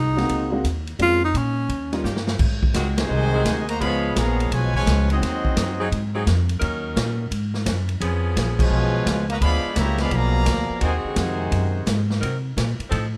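A close-miked tenor saxophone with a soft attack and vibrato opens this joyful big band swing excerpt, supported by sustained chords from a smooth-topped saxophone section, a dark, woody pizzicato upright bass and, briefly, an open-sounding upright piano with long sustain. A swinging drum kit with a boomy kick and rolled-off top sits at a roomy distance, playing a fill at 2.1 seconds before band accents hit at 2.9 and 8.5 seconds. Bright, tight trumpets with light vibrato then take the melody in two brassy passages, joined by a warm trombone section on a second line.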